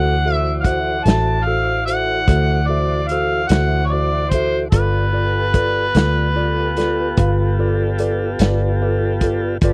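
A mellow, overdriven harmonica with light vibrato and scooped notes carries the jazz-tinged melody until 7.9 seconds in this swaggering, laid-back slow blues excerpt in 12/8 at 49 BPM, moving from D9 to G9 at 4.7 seconds over a clean tine electric piano with analog chorus, smooth tonewheel organ chords through a slow rotary speaker, a dark, round, foam-muted electric bass up front, and a muffled, lo-fi vintage drum kit with a tight kick that enters at 0.6 seconds, all in a dry, close 1970s-style studio sound.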